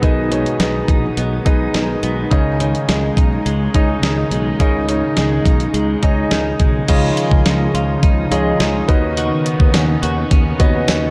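1980s-style pop at 105 BPM in a moody, nostalgic vein, this brief cut from a longer piece sets an intimate concert grand piano with audible action noise and long, shimmering sustain up front beside a thumpy, fat-snared 12-bit drum machine playing kick, snare, hi-hat, tambourine and crash, while a growly fretless bass, a bright, compressed clean guitar riff drenched in lush chorus and tape echo, and mellow, phased string-machine cellos in the background move through Abm and Dbsus2 before shifting at 6.9 seconds to Dbadd9 and Badd9, all wrapped in a dark, warm hall.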